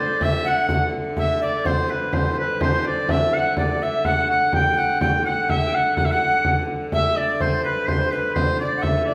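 A triple metre with a straight feel carries this short cut from a longer medieval dance, rustic and ancient in mood. A deep, large frame drum sits up front from 0.2 seconds, its acoustic sound distant and steeped in a big room. Leading the melody is a bright shawm with vibrato, played in folk style as a solo voice up front yet sounding distant and roomy. Alongside it a breathy alto recorder adds a second line with a woody, straight tone, soft attack and lifted highs, kept in the background. A concert harp, thumb-plucked and ringing, traces another second line very quietly with a warm acoustic tone, while a clear, biting hurdy-gurdy holds an earthy, airy-bowed drone throughout. The whole performance is set in a church or concert hall, where a wet recital-hall reverb lingers around the ensemble.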